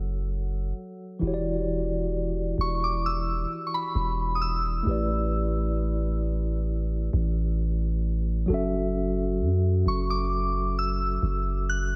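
A deep, sine-toned 808-style bass sits up front in this contemporary R&B excerpt, its long notes striking quickly and then decaying beneath a slow 66 BPM pulse in straight 4/4. Over it, a mellow tine electric piano with a clean, cozy tone plays the accompaniment, heard as if through its own built-in speakers. A soft, pure FM synth bell carries the melody high in its range, its gentle notes shimmering with chorus and trailing into a diffuse ambient delay before it drops out at 11.8 seconds. The harmony drifts in E dorian from F#m7 to Em9 at 1.2 seconds, then through A9sus4 and back to F#m7. A lush hall reverb soaks the dreamy mix, giving the piece a sensual, longing mood.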